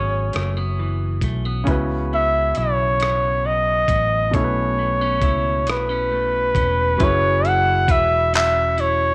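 A light reverb gives this short cut from a longer piece a soft, late-night glow, with the flugelhorn placed close and up front. It is a slow, sultry R&B groove in 6/8 at 45 BPM (dotted quarters), with a straight feel, moving through F#7sus4, C#m11 and B9sus4 before returning to F#7sus4 at 7.0 seconds. The flugelhorn carries the melody in a jazz style, its warm tone, soft attack, scooped notes and light vibrato trailed by a slapback echo. Beneath it, a polished baby grand piano plays the accompaniment, while a clean, picked electric guitar adds a quieter second line. A dark, round fingered electric bass sits forward in the mix, and from 0.3 seconds a dusty, gritty, compressed sampler-style drum kit joins with a thumpy kick, hi-hat, rim click and handclaps, re-recorded in a large room.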